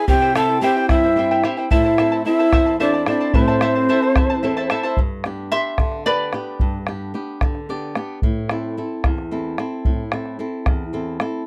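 A steady 6/8 at 74 BPM drives this earthy, wistful Andean folk excerpt in A minor, where a reedy, airy quena with vibrato carries the melody over a breathy, close-miked cane pan pipe line with chiff until both fall away at 4.7 s; a bright, shimmering double-strung charango then takes the lead from 5.0 s, a fingerpicked flamenco guitar with fresh strings adds a fill at 7.4 s, and a deep, dark bombo sits up front in the dry, close 1970s-style studio sound with light reverb.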